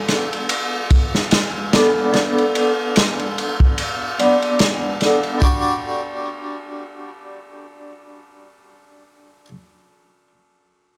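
Cinematic and hypnotic, this brief trip hop excerpt sets a swung, unhurried groove with a crunchy breakbeat drum kit of tight kick, medium-tuned snare and dark ride cymbal, its gritty, saturated tone carrying a vintage sampler crunch until it stops at 5.6 seconds. Up front, an airy, brilliant harpsichord plays the accompaniment through the whole clip, its plucked, full sound shaded by tremolo, a low-pass filter and tape echo. The harmony moves from Bm7 to Dadd11/G at 5.4 seconds, and once the drums drop out the harpsichord carries on alone in a small, lightly reverberant room.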